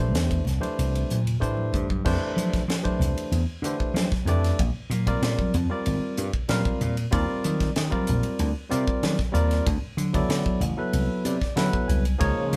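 A straight 4/4 groove at 94 BPM drives this slick, soaring electric jazz fusion piece in F major, where a crisp, polished drum kit with a high-tuned snare and tight kick plays a fill at 1.4 seconds, a punchy vintage slap bass backs an up-front, barky tine electric piano through ninth chords from C9 to D9 while very quiet, thin-skinned congas join at 0.4 seconds, and the piano takes a fill at 10.9 seconds before a silky analog string pad with ensemble chorus slips in at 12.2 seconds, the band playing live together in one reverberant studio room.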